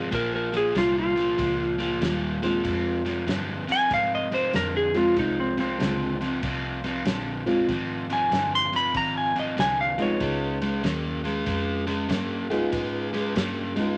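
A swung shuffle in 4/4 drives this mournful, soulful electric blues excerpt, with a soul drum kit of tight kick, medium-tuned snare and dusky ride cymbal playing in a small, smooth-sounding room. Up front, a clean lap steel guitar carries the melody with slide, fingerpicks and volume swells until it falls away at 11.9 s. Beside it, a crunchy, picked overdriven guitar sits forward in the mix with a gritty riff. A woody, boxy upright piano supplies mellow accompaniment, while a vintage foam-muted electric bass adds a round, punchy low end from the amp. The harmony moves from Bbm to Fm and then to Db7 near the close, all set in a moderate studio reverb.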